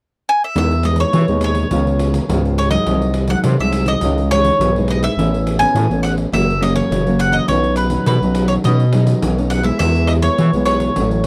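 This dry, close recording has a 1970s studio character with light reverb, capturing a festive, lively slice of samba and choro at 104 BPM in 4/4, cut from a longer piece in E major. A woody, double-stringed mandolin sits up front and carries the picked melody from 0.3 seconds, ranging from B4 to G#5. At 0.6 seconds the rest of the group enters: a warm, thumb-plucked nylon-string guitar supplies classical-flavoured accompaniment, while a growling, thick FM bass with a fast attack and sustained tone holds the low end from F#1 to E3, also up front. A jingly pandeiro adds percussion, sounding distant as if in a large room. The harmony moves from Emaj7 through C#7, G#7/B#, C#madd9, Aadd9, F# and Badd9 before arriving on E at 9.8 seconds.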